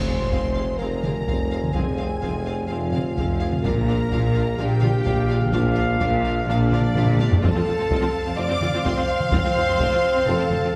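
Dark and dramatic, this short cut from a longer cinematic orchestral score opens at 0.0 seconds with a huge, bright but very quiet impact as the orchestra enters. A taiko ensemble struck with heavy sticks drives the piece from 0.3 seconds and plays a fill at 7.0 seconds. Low strings and brass carry the foundation: a rich, bowed double bass section and cello section sit in the background with a mellow, soft-attack tuba, while a dark, roomy French horn section and a tight, very quiet trombone section hold sustained chords and a distant trumpet section adds stabs. Up top, a distant, lush violin section sustains the melody on a single high note over a focused second violin line, with a smooth viola section filling the accompaniment in the background. The harmony moves from F minor to B-flat and then to F major, and the whole piece rings in the generous reverb of a church or concert hall.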